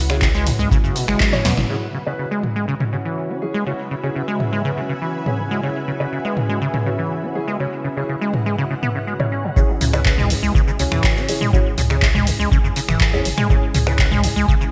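A straight 4/4 pulse drives this hypnotic acid house excerpt, carried by a punchy, tape-warm analog drum machine of snare, handclaps, finger snaps, hi-hat, shaker and toms, set up front with gated reverb. A deep electronic kick opens the drop alongside a round sine sub bass, then both drop out as a drum fill leads to a band accent near 1.6 seconds; the kick returns at 9.6 seconds for the second drop, with the sub bass following at 9.8 seconds. Throughout, a squelchy, resonant sawtooth acid bass riff sits up front, thickened by tube saturation, chorus and delay. A dark, mellow grand piano adds vintage stabs with long sustain, while a warbling, detuned analog pad holds sustained chords in the background, pumping against the sidechain and filter-swept through the middle section. Above them, a cloudy, evolving granular pad drifts in a blurred haze until 9.6 seconds, all set in a lush hall reverb with bright 1980s-style digital production.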